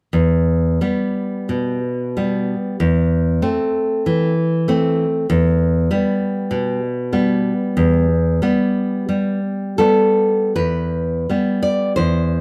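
A fingerpicked nylon-string guitar opens this wistful, passionate fragment of a romantic classical solo, its bright, full-bodied tone sitting up front in a light room reverb. Played with a free, rubato feel in 4/4, it moves from E minor to A minor over an E bass at 2.8 seconds and back to E minor at 5.3 seconds. It reaches a new section at 10.6 seconds before the clip ends at 12.4 seconds.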